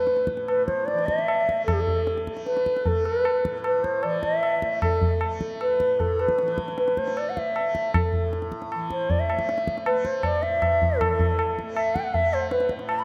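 An airy bamboo bansuri, tongued and laced with vibrato and a touch of delay, opens up front over a softly plucked, buzzing, shimmering tanpura drone in this introspective, meditative Hindustani excerpt in raga kafi on A, tuned to A4 = 445 Hz, with a low-tuned, close and dry tabla with a short ring joining at 0.1 seconds to drive a straight 4/4 pulse around 154 BPM that speeds up throughout, all bathed in a dreamy plate reverb, as a brief opening gives way at 1.7 seconds to a longer passage that runs to the cut at 13.0 seconds.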